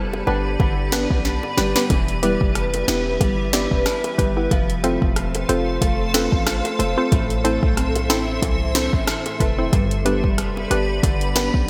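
A swung 92 BPM dancehall groove in 4/4 opens on a short break. The afro-pop drum kit enters at 0.6 s and plays a fill before the full beat settles at 1.9 s: a deep electronic kick, sharp snare, rim click and metallic hats sit up front in gated reverb, while tight, high-tuned bongos tap very quietly beneath. A deep, boomy 808-style bass anchors the G, Em, F, Am progression, while fingerpicked nylon-string guitar arpeggios carry finger squeaks and a chorus-and-delay treatment, and a soft, round, wave-folded pluck with sidechain pumping fills the middle. Above them, a cloudy, evolving granular pad holds blurred, detuned chords, lending this bright 1980s-style digital production a sultry, hypnotic haze under a moderate plate reverb.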